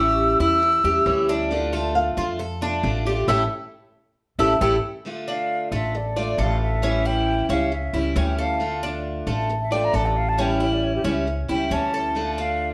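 A straight 4/4 Latin groove at 135 BPM sets a danceable, warm mood in D harmonic minor, cut from a longer piece and moving between A7 and Dm throughout. An upright bass sits up front, plucked pizzicato with a woody tone, while a picked steel-string acoustic guitar, also up front, fills in the accompaniment, with finger squeak audible. A Cuban tres adds metallic arpeggios from its doubled strings, some octave-doubled. A mellow concert flute carries the melody with an airy, tongued tone, vibrato and a slapback echo. A thumb-plucked flamenco guitar plays a soft second line in the background from 0.8 to 4.8 seconds. The band hits an accent before the flute takes a solo from 5.1 seconds, all set in a moderate large studio reverb.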